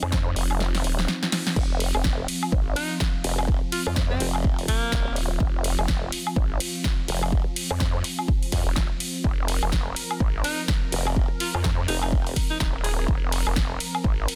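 This excerpt has a dense, heavily limited modern sound set in a digital ambience, with the drums and basses pushed up front. It's a gritty, aggressive bass house groove in 4/4 with a 16th-note swing. A punchy, layered electronic kick anchors the beat, and a house kit adds a punchy snare, hi-hat, ride, crash and woodblock. The kick drops out between 0.6 and 1.6 seconds while the kit plays a fill. Underneath, a nasal vowel-sweep wobble bass, saturated through tube warmth and chorus, pumps against the sidechain, joined later by a sawtooth formant-sweep wobble bass with overdrive. Above them, a bright, detuned sawtooth pad sustains evolving, resonant chords with a soft attack and long release. From 2.8 seconds an edgy alto saxophone carries the pop-style melody with vibrato, trailed by tape echo.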